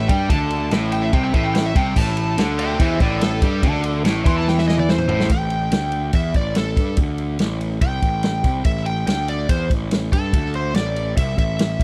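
A straight 4/4 pulse at 144 BPM drives this gritty, heavy blues rock power trio piece with a southern rock edge, cut from a longer work in A minor over an Am chord. A bright, overdriven slide guitar played with fingerpicks takes a solo in its upper register while a crunchy, double-tracked rhythm guitar plays a riff until 5.3 seconds, as a growly fuzz bass and a vintage acoustic kit with dark cymbals and a tight kick hold up front, the drums firing a fill from 4.5 seconds. After the chord drops out, slide, bass and drums carry on in a dry, close 1970s-style studio sound with little reverb.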